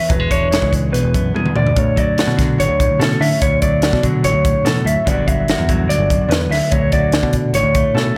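A dark, slightly broken-up electric guitar through a small old amp opens with intricate high arpeggios soaked in spring reverb, sitting up front over a clean, fingered electric guitar accompaniment in this wistful math rock and midwest emo fragment in straight 4/4. A picked electric bass with a warm, direct tone and a crisp fusion drum kit with a high-tuned snare, punchy kick and pumping small-room sound join almost at once, with drum fills at 1.3 and 8.0 seconds. The harmony moves from E7 through Dmaj7 and Gmaj7 to D in a dry, close mix cut from a longer piece.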